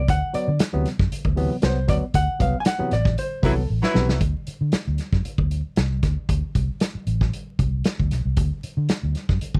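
A gritty, playful funk groove at 116 BPM in D mixolydian, cut from a longer piece, opens on a D13 chord with a dark, clean hollow-body jazz guitar taking a brief solo while a round, foam-muted fingered bass and a punchy vintage drum kit with a pumping small-room sound sit up front, joined at 0.3 seconds by bright, barky electric piano stabs through a combo amp. A band accent arrives at 2.1 seconds, followed by a smooth-topped horn section with light vibrato playing a short second line and then a drum fill, before the chord drops out at 4.2 seconds and bass and drums carry on alone. The dry sound has little reverb and a layer of vinyl crackle.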